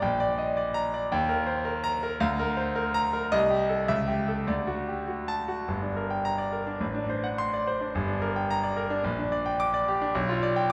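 This classical virtuoso piano study in G minor, cut from a longer piece, moves at 108 BPM in 2/4 with a rubato feel, agitated and passionate in mood. A solo concert grand plays throughout, spanning G1 to D6 with a clear, polished tone, deep bass, short sustain and an up-front presence. Its opening passage runs through Eb, Cm and a C#dim to D, and a new passage at 5.7 s settles between Gm and D7/A before closing on G7/B, all within a wet recital hall reverb heard from further back in the room.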